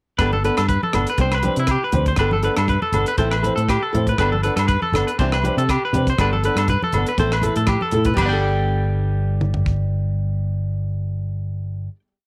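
A swung 4/4 groove at 120 BPM sets this short, carefree highlife guitar band piece in motion, its sixteenths lightly lilting as the harmony rocks between Gadd9, Csus2, Am and Cadd9 in G major. Up front, a round, fingered electric bass plays a syncopated riff beside a bright, twangy clean electric guitar picking an arpeggiated ostinato with slapback echo. A fingerpicked flamenco guitar adds rhythmic strumming in upper chord shapes, while a dry, tight funk drum kit with bright cymbals and a tight kick carries the highlife kit groove. Further back, ringing agogo bells sound a low bell time line and thick-skinned, low-tuned congas under soft hands play a loose pattern, both dropping out around 8.3 seconds after a drum fill from 7.6 seconds. From 8.2 seconds the guitars and bass hold a final Gadd9 chord, bathed in light reverb, with the drums carrying on until about 9.8 seconds, until the close near 12 seconds.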